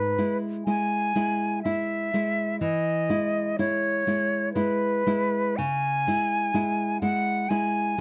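In a gently rubato three-four lilt, this lyrical, serene romantic duo pairs a pure, silvery concert flute carrying the melody with soft-edged attacks and vibrato, over a full-bodied, fingerpicked nylon-string guitar accompaniment. Both instruments sit up front for the whole 8 seconds, moving from E/G# to E at 2.6 seconds and C#m at 5.6 seconds. A light reverb and a dark production surround this short passage, cut from a longer piece.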